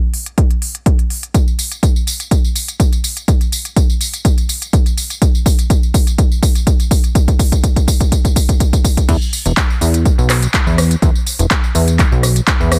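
Emotional and bittersweet, this progressive house excerpt builds on a deep house drum kit of smooth hats, handclaps, rim click, tambourine and crash cymbal pumping under sidechain, with a punchy, up-front electronic kick entering at 0.4 seconds and a long drum fill carrying the build-up until the drop at 9.1 seconds, where a funky, plucky analog bass of sawtooth and square-wave tones arrives with a fast-attack filter pluck and its own sidechain pumping, all in a dry, close-sounding mix.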